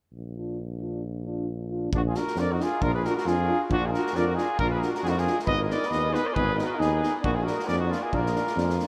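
Fiery yet bittersweet, this Balkan brass band piece is cut from a longer work and rolls along at 135 BPM in a swung 2/4, set in Bb phrygian dominant with the harmony moving from Bb to Abm and back. A mellow tuba carries the bass up front from 0.1 seconds, joined at 0.4 seconds by two classical-style euphoniums in the background, one with light vibrato. At 1.9 seconds an acoustic kit with a tight kick and medium-tuned snare enters alongside a flugelhorn second line, and at 2.0 seconds a warm trumpet with light vibrato takes the melody up front, both horns carrying delay, all inside a dreamy mix soaked in huge ambient reverb.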